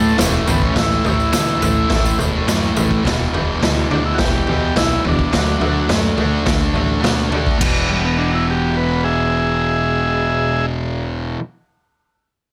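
The recording has a raw, small-room sound with light reverb, and the gritty, saturated drum kit and double-tracked fuzz guitar sit up front. This swaggering, rowdy garage rock runs at 105 BPM in a straight 4/4 in E mixolydian, and it is cut from a longer piece. The bright, picked fuzz guitar drives the riff over a fingered electric bass thick with overdriven fuzz, while a vintage, buzzy combo organ carries the melody on top. The drums bring a boomy kick, a medium-tuned snare, toms and crash cymbal, their top end rolled off. A jingly tambourine rattles in the background only through the opening seconds, stopping at 2.9 s. The chords move from A5 to E5 and D before landing on E as a new section begins at 7.6 s, just before the drums drop out at 7.7 s.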